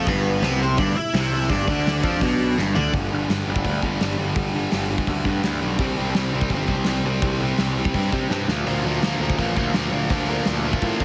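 Dry, heavily compressed and radio-like, this energetic, upbeat punk rock excerpt opens with a bright, crunchy overdriven guitar melody up front that drops out at 2.9 seconds, while a warm, distorted electric guitar riff, a growly fuzz picked bass, a biting overdriven guitar riff in the background that returns at 8.7 seconds, and a dark, big-room drum kit with a punchy kick and occasional fills drive on.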